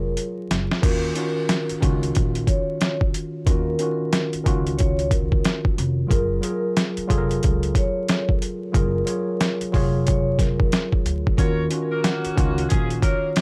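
Dry, gritty hardware sound with vinyl crackle frames this dark boom-bap hip-hop cut from a longer piece, moving at 91 BPM with a swung 16th feel in Eb minor, where a pitched-down, overdriven sampler drum kit with a thumpy kick sits up front beside a worn, slightly out-of-tune tine electric piano, a woody pizzicato upright bass anchors the low end, a metallic, ringing vibraphone carries the melody through tape echo, and a soft-attack jazz saxophone section adds clear stabs from 11.4 seconds over chords moving between Gbmaj9 and Ebm9.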